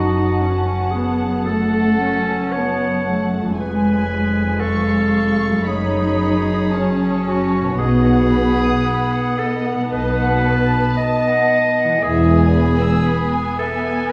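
Heard through a wet concert-hall reverb with a small-room ambience, this excerpt from a romantic orchestral movement feels tender and lyrical, moving with rubato through harmonies that run from F#m7 to E. A bright, up-front solo clarinet carries a second line beneath a veiled, con sordino violin section singing the melody, while a second, distant violin section adds another line and dark violas supply the accompaniment. Softly ringing, thumb-plucked harp arpeggios sit underneath, and lush background cellos join smooth-topped double basses on the bass until 12.9 s.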